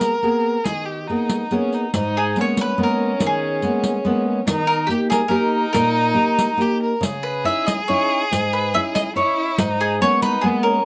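A straight 3/4 lilt at 141 BPM carries this passionate, wistful Italian folk serenade in G# harmonic minor: a full-bodied, fingerpicked nylon-string guitar with audible finger squeak and a close, dry riq with bright jingles open alongside a bowed violin singing a focused, smooth-topped second line with vibrato, before a woody, double-strung mandolin takes the picked melody up front at 2.2 s, the chords moving from G#madd9 to D# and C#madd9 in a moderate small-room ambience.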